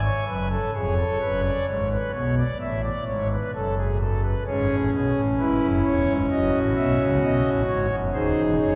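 A solo pipe organ on thick, warm foundation stops carries this excerpt from a baroque-style four-part fugue, its romantic voicing spanning D#1 to G#5 as it moves at a serious, contemplative 65 BPM in 4/4. The harmony passes from G#m7 through F#m and C#m/G# before arriving at G#7/D# at 8.1 seconds. The organ sits up front in a long, wet cathedral reverb that places the listener further back in the room, and the passage is cut from a longer piece.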